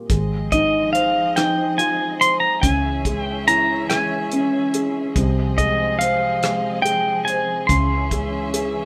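Up-front, fingerpicked pedal steel guitar carries the melody with slide and volume swells over a woody, intimate upright piano with audible action noise, a round, foam-muted vintage electric bass, veiled con sordino strings holding soft-attack chords, and a cloth-damped, thuddy drum kit of tight kick, hi-hat and rim click, all in a moderate studio reverb for this hopeful, heartfelt acoustic folk-pop ballad excerpt in 6/8.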